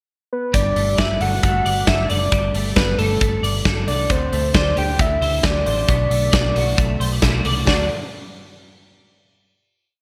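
Breezy jangly indie pop in a bright 1980s-style digital production, where a soft, round synth lead layered with a sub octave, chorus and vibrato plays a motif-based melody of call phrases from a pickup at 0.3 seconds, joined at 0.5 seconds by a twangy, compressed twelve-string electric guitar in a fingerpicked roll pattern with ensemble chorus, a dark, foam-muted fingered bass driving in eighth notes, and an up-front rock kit with gated reverb laying down a dance-floor indie beat with off-beat open hats, before the piece settles onto a final chord at 7.7 seconds.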